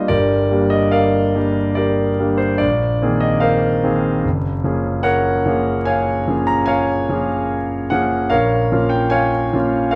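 Classical impressionist solo piano in a rubato 5/4, luminous and hazy, with a clear, polished concert grand sitting up front, its deep bass and long sustain blooming through a moderate recital hall reverb, captured by close, detailed microphones under a layer of vinyl crackle, as the harmony drifts from Gm7 through Bb9sus4 and Gbmaj9 to Bbm7 in this brief cut from a longer piece.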